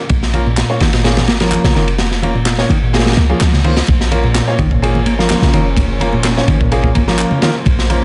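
A dry, dark-topped mix carries this raw, energetic breakbeat excerpt at 127 BPM in Bb minor, where a crunchy, saturated breakbeat kit with tight kick and dusky cymbals drives over a deep, boomy 808-style bass, bright picked electric bass riff with delay, boxy short-sustain piano stabs with delay, layered tape-warm handclaps and very quiet hard-hand congas, until the kick drops out from 2.9 to 3.9 seconds, with a faint reverse cymbal sounding in its final moments, and veiled, muted chamber strings enter at 3.9 seconds with sidechain pumping.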